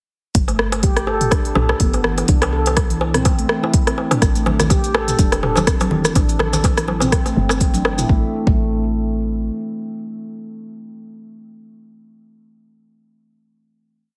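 Afro house at 124 BPM in A minor with a gentle 16th-note swing, this short, complete piece feels earthy and warm, moving from a G chord into an A7 sound around 4.2 seconds. An up-front electronic kick drives four-on-the-floor alongside a layered deep house kit of smooth programmed closed hats, rim clicks and low toms, both set in studio reverb. A woody, round FM bass plays long gliding notes with a fast attack and dark decay, pumping with sidechain, while a stainless-steel handpan rings out a repeating 32-step arpeggio sequence under soft fingertips, mellow and mid-forward, trailed by dub echo and the same pumping. Hand percussion adds texture: a close, dry clay-shell darbuka with natural skin plays a soft cross rhythm from 0.5 seconds, close, dry interlocking congas with a thick skin join at 4.5 seconds, and grainy maracas sit in the background with hand-played sixteenths. The drop runs until 8.1 seconds, after which a final chord carries the piece out, all wrapped in light small-room ambience and a heavily compressed, radio-like sound.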